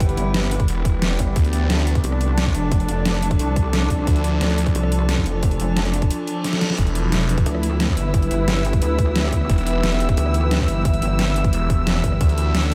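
Aggressive and futuristic, this dark technical drum and bass runs at 177 BPM in a straight 4/4, sitting in E phrygian as the harmony moves between E minor and D minor. A pulsing, heavy pluck wobble bass with tube saturation and chorus sits up front from the start, joined in bursts by a swirling, thick, detuned saw bass run through a phaser, which comes in at 0.7 seconds and returns several times before holding from 9.5 seconds to the end. Overhead, an eerie, warbling FM drone with a metallic, inharmonic edge sustains chords through chorus, phaser and sidechain pumping, while a muted, veiled string section bowed con sordino adds a dark ensemble layer, also pumping to the beat. The overdriven drums pair a tight electronic kick with a dubstep kit of deep snare, rim click and bright hi-hats. At 6.2 seconds a very quiet reverse cymbal enters, followed by a short drum fill at 6.4 seconds, together leading into the return of E minor, all within a dreamy mix soaked in a huge ambient reverb.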